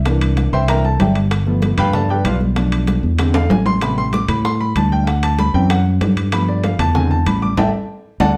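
A punchy, up-front fingered electric bass opens this lively, sunny Afro-Cuban jazz excerpt at 191 BPM in G mixolydian, joined at once by a polished, present grand piano that takes the solo over changes moving from C9 through G9, Am7 and D9. Alongside them, ringing metal-shell timbales sit close and dry, while bright, thin-skinned congas and tight, high-tuned bongos stay in the background. Drum fills arrive at 3.3 and 7.6 seconds, the last one landing with a band accent on an A5 chord, all heard from further back in a reverberant studio room.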